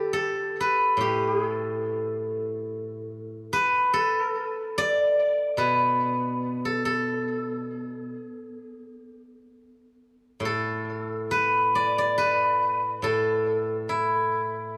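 Chinese traditional solo music for plucked strings unfolds in a pastoral, elegant mood, moving with a free rubato feel around 63-73 BPM in the A shang mode. A single steel-string zither, played with fingerpicks, carries everything from A2 up to D5 with a bright, silvery, ringing tone that sits up front in a moderate scoring-stage reverb. Cut from a longer piece, the passage shifts into a new section at 10.4 seconds before breaking off at 14.8 seconds.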